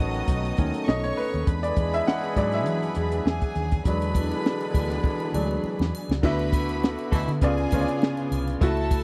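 A 101 BPM groove in 4/4 with a light 16th-note swing drives this romantic, lush 1970s-style soul excerpt, anchored by a compact cocktail drum kit with a high-tuned snare and punchy kick, a foam-muted fingered electric bass, and a drum fill from 5.0 to 6.2 seconds. A worn, up-front grand piano carries a solo through the opening 6.2 seconds, framed by an earthy violin section on a second line, a woody string section sustaining chords in the background, distant octave-doubled horn stabs, and a ringing vibraphone with slow motor vibrato. A shimmering triangle joins at 3.9 seconds, and the harmony moves from B7 and E7 to D69 and C#7b9, all caught in a dry, close studio sound.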